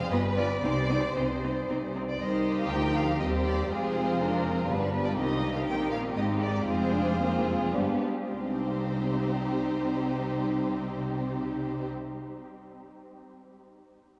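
A stormy, dramatic C minor excerpt from a quick classical-period movement in 3/4 for string orchestra, opening on a G7 chord as all five sections sound together: violins carry the melody between C5 and G5 with soft-attacked vibrato, a second violin line sits close and up front, the viola section adds focused, lush accompaniment, the cello section sings in the background with portamento, and the double basses ground the bass, all washed in a vast cathedral reverb as the tempo slows from 4.4 to 8.3 seconds through G, Cm, Ab, Fm and G harmonies before settling on Cm at 8.3 seconds.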